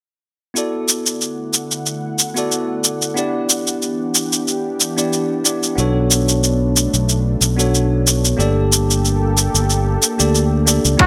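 A bell-like tine electric piano opens this sunny, blissful sunset chillout cut, taken from a longer piece, sitting up front from 0.5 s, clean and bright, softened by a low-pass filter and trailed by delay. A moment later, a gently swung groove of electronic shaker and crash cymbal joins, very quiet and gritty with a sampler-style edge, while a lush, detuned sawtooth pad with a slow attack and chorus spreads sustained chords beneath through a progression of D69, Em7, Bm9 and Gmadd9. At 5.8 s a fretless electric bass arrives up front, its tone bright and thickened by tube saturation. Just at 11.0 s, as the excerpt closes, a deep, overdriven, layered electronic kick drum and a nasal, breathy trumpet with straight mute, scooping into its note with light vibrato in a jazz style, appear in the foreground. The whole sits in a moderate hall reverb with a bright 1980s-style digital sheen.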